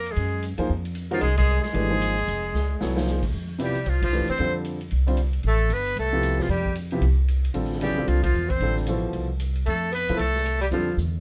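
A lightly reverberant, natural-sounding excerpt of modal jazz swinging briskly at 228 BPM, with a spiritual, searching mood that opens on F minor and moves into a bright F lydian colour at 3.3 seconds. An up-front trumpet with a buzzy metal mute carries the melody with light vibrato and scooped notes, joined on a second line by a breathy, vintage-toned tenor saxophone, while a woody, growly upright bass anchors the low end and a clear grand piano with long sustain supplies the accompaniment. A big-band drum kit with a punchy kick, recorded in a big room, keeps the swing going. Band accents land at 1.4, 4.0 and 8.2 seconds, and a drum fill at 2.5 seconds leads into the change.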